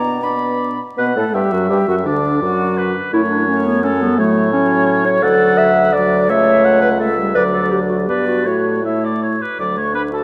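A quick classical-period movement for wind quintet in 3/4 at 169 BPM, played with a graceful, cheerful rubato feel and cut from a longer piece, moving from B minor to D major at 5.2 s. An airy, crisp-attacked silver flute carries the melody from a distant position, while a mellow oboe with vibrato sings a roomy second line, and a smooth clarinet and warm French horn fill in the accompaniment over a bassoon bass with light vibrato. All five parts play throughout in a wet concert hall reverb, with a layer of vinyl crackle over the recording.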